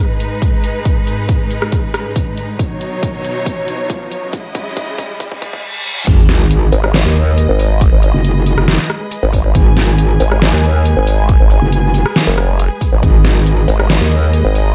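A clear, focused string section opens this menacing, chaotic heavy wobble dubstep excerpt in G# minor, bowing sustained chords with vibrato that pump under sidechain compression as the harmony moves from G#m through Badd9 and C#madd9. At 138 BPM in a half-time 4/4 feel, a layered electronic drum kit with a deep snare, hi-hat, rim click and crash builds alongside a punchy, up-front kick while a filter sweep runs through the opening and a drum fill runs from 2.6 to 5.6 seconds. Background electronic effects (a riser, a reverse cymbal and a sub drop) carry the build-up into the drop at 6.1 seconds, where an impact hits and the harmony returns to G#m. There a metallic, aggressive FM wobble bass enters, joined moments later by a nasal, resonant vowel-sweep wobble bass shaped by a formant filter, both saturated, compressed and thickened with chorus and overdrive. The production is dark and dry, with the basses and kick pushed forward and the drums re-recorded in a large room.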